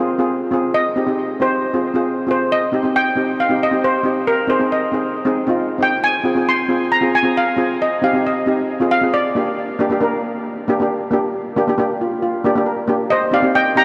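Intense and driving, this calypso clip in C minor moves at 136 BPM in a straight 4/4, with a dark, smooth cello pan played with medium rubber sticks carrying the accompaniment throughout, moving through Cm, Fm, Ab and Gm. A bright, shimmering lead pan struck with hard rubber sticks enters at 0.7 seconds with an up-front, close-miked solo line touched by analog delay. It drops out around 9.5 seconds, a pan fill follows at 11.8 seconds, and the lead returns at 13.1 seconds. The whole mix is dreamy and soaked in a huge ambient reverb, giving the metallic pans a long, hazy tail.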